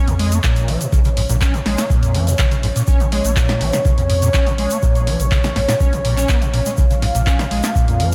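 A straight, trippy, hypnotic acid house passage, cut from a longer piece. A deep, tape-tinged electronic kick sits loudest in the mix from 0.4 seconds. A punchy analog drum machine adds handclaps, hi-hat and a punchy snare in a short room, while a grainy, bright tube shaker and a very quiet, distant big-band kit with a rolled-off top add texture. The squelchy, resonant acid bass riff is a gritty, saturated square wave with a filter sweep, bathed in ensemble chorus and diffuse ambient delay. Beneath it, a round, sine-like analog bass with tube saturation pumps with sidechain compression, and a moody, detuned sawtooth pad holds sustained chords with a slow attack, chorus and the same sidechain pumping over a single Bb minor chord. A lush hall reverb soaks the mix in a dreamy haze.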